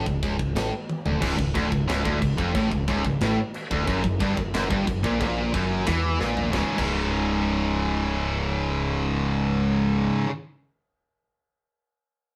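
Heavy metal at 181 BPM in a straight 4/4, aggressive and heavy, captured as a band playing live in one room with moderate studio reverb. A bright, overdriven electric guitar drives the riff from the start, and at 1.2 s a second, high-gain distorted guitar joins with the same low register, both picked and up front. Underneath, a growling picked electric bass with a dark, round, overdriven tone holds the bottom end. The tight metal drum kit has a big-room, mid-forward sound with bright cymbals, a medium-tuned snare and a tight kick, playing fills at 0.9 s and 6.2 s before dropping out at 6.9 s. The harmony moves from C# to F#7b9, then settles on a C#5 power chord as a new section begins at 6.5 s, in this short cut from a longer piece.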